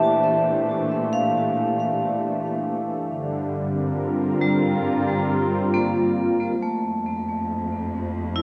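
Ambient in F major at 68 BPM, this short, luminous excerpt drifts through Bbmaj7 and Gm7 before settling on F6 at 6.6 seconds, all bathed in a lush hall reverb with a cassette-tape character. Up front, a smooth, detuned analog pad holds sustained chords with a warbling chorus while a bright, metallic vibraphone struck with hard mallets rings out arpeggios through tape echo. Beneath them, a dark, woody cello section carries the bass with bowed vibrato, and at 8.0 seconds a calm, organ-like drone enters, barely audible.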